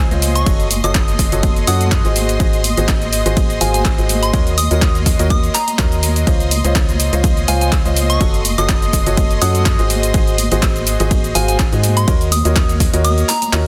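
A dry, dense and heavily limited mix carries this euphoric piano house excerpt, where a clear, woody upright piano riff with delay and a hollow, organ-like FM bass pump against an overdriven electronic kick, while a punchy analog drum machine ticks out cabasa, handclaps, hi-hat and ride, distant tambourine and congas sit in the background, a silky sawtooth string pad holds sustained chords, and a soft, pure synth bell melody shimmers with chorus and phaser from 0.4 seconds to the end, carrying on after the kick drops out at 13.0 seconds.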